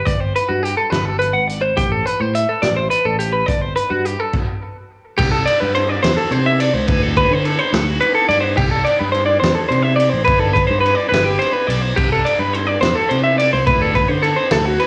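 Bright and intricate, this short cut from a longer piece sits between math rock and midwest emo, moving at 71 BPM in a straight 6/8 with the guitar tuned to A4 = 443 Hz. A twelve-string electric guitar carries the arpeggios up front, its clean, twangy, compressed tone colored by cassette tape and analog delay as it ranges from F#4 to F#5. A fingered electric bass supplies a round, direct-and-amped low end, while a loose indie drum kit adds a fat snare, punchy kick and dark cymbals, its gritty, saturated sound rolled off at the top and put through cassette tape as well. The opening passage moves from Gmaj9 to Am7 before a full stop from 4.3 to 5.2 seconds, after which the second section turns between C69 and D7(no3), with a G chord at 10.3 seconds. The whole performance has the light reverb and small-room ambience of a home recording on cassette.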